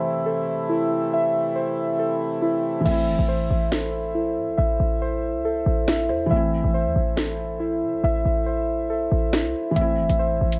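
Hip hop drill in A minor at 139 BPM with a half-time feel, dark and tense, cut from a longer piece: a soft, thick-felt upright piano plays under up-front muted synth keys whose soft arpeggios pass through chorus, low-pass filtering and digital delay, while a reedy, breathing pedal harmonium holds chords until 2.8 seconds; then a punchy, tight 808-style bass and an electronic drill kit with a sharp snare, crash and metallic hi-hats enter at 2.9 seconds, the hi-hats muted until 9.8 seconds, all set in light reverb and digital ambience.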